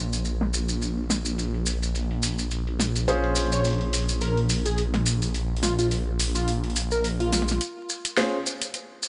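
A swung 4/4 groove at 106 BPM drives this gritty, playful glitch hop cut in Bb minor. An electronic, layered drum and bass kit brings a cracking, overdriven snare and bright hi-hats, both under a low-pass filter, with a filter sweep on the drums through the opening stretch. Grainy, vintage maracas sit alongside, while a thick, swirling detuned saw bass, saturated and phased, holds Bb1 up front. A concert grand piano with audible action noise plays intimate stabs through tape echo and a low-pass filter over a Bbm7 chord. At 3.5 seconds a punchy, catchy unison lead enters with vibrato, a filter pluck, subtle chorus and 12-bit sampler grit. The bass and lead stop at 7.6 seconds, giving way to a build-up over a rootless Bbm7, all in a dry hardware sound with light reverb and vinyl crackle.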